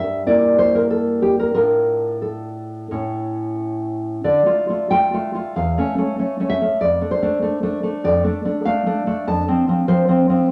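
Rubato and flexing between 84 and 98 BPM in 4/4, this romantic piece for solo classical guitar unfolds in D minor with a passionate, wistful mood, cut from a longer work. The nylon-string guitar sits up front with a dark, full-bodied, thumb-plucked, deep classical tone, ranging from E2 to A5, and moves from a diminished opening through Dm and A chords before reaching a new passage at 4.2 seconds that settles toward F. A short, wet studio reverb surrounds the instrument.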